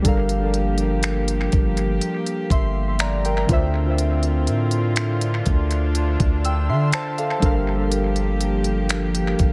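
A slow, straight 4/4 pulse at 61 BPM comes from a smooth R&B drum kit of finger snaps, hi-hat and a knocking kick, its electronic sound roughened by vintage 12-bit sampler grit and tape echo, while a long, deep 808-style sine bass enters at 0.1 s with a fast attack and decaying tail. Over this, analog keys with a detuned square-and-sawtooth tone, filter sweep, chorus and tape echo play the accompaniment, and a dark studio string section holds soft, sul tasto bowed chords that float close in the mix. This excerpt of contemporary R&B in G dorian moves from Gm7 to Dm7 and back, its light reverb and echo-heavy mix lending a longing, late-night mood.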